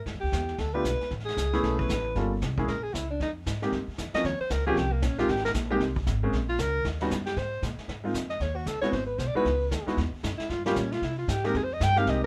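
An alto saxophone solo opens this playful small-group swing cut together with a woody, thumpy pizzicato upright bass, the sax's clear, present tone colored by vibrato and subtone. A vintage brush kit with a punchy kick and a rolled-off top joins at 0.1 seconds, and an intimate concert grand with a deep bass register and audible action noise comes in at 0.7 seconds to comp through extended and altered chords. A light reverb gives the whole group a gentle glow across two passes of the same section.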